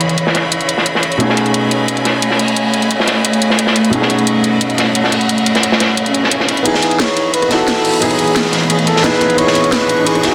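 A crunchy, saturated breakbeat kit sits up front in this lush, melancholic liquid drum and bass excerpt, its dark cymbals and medium-tuned snare layered with an electronic garage kit's cracking snare, rim clicks and hats. A natural-sounding grand piano and a rich, bowed string section with vibrato carry C#m9 and B13 chords in a lush hall reverb, and a very quiet electronic swell and riser enter at 6.1 seconds. At 6.7 seconds a punchy flugelhorn takes the melody in classical style, with digital delay and a filter sweep, as the build-up begins in a dense, heavily limited master.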